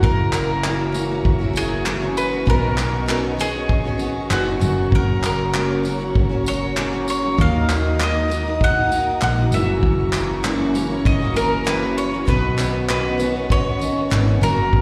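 Acoustic pop with a tender, reflective mood, moving at 98 BPM in a straight 4/4, this short passage is cut from a longer piece and tuned slightly sharp to A4 = 443 Hz. A bright, double-strung bowl-back mandolin carries the melody from start to finish, its picked notes dressed in plate reverb, slapback echo and tape echo. Beneath it, a double-tracked, picked steel-string acoustic guitar sits up front with audible finger squeak, while a woody, round fretless electric bass with a dark, hollow-body tone anchors the low end. A lush symphonic string section holds soft-attack bowed chords with expressive vibrato, and an unplugged drum kit played with bundle sticks adds a tight kick, tambourine and handclaps that sound distant and roomy. The harmony circles through Gb7, Badd9, Gb and Ebm, and the whole performance comes across as a live gig heard through the venue's PA, wrapped in moderate club and recital hall reverb.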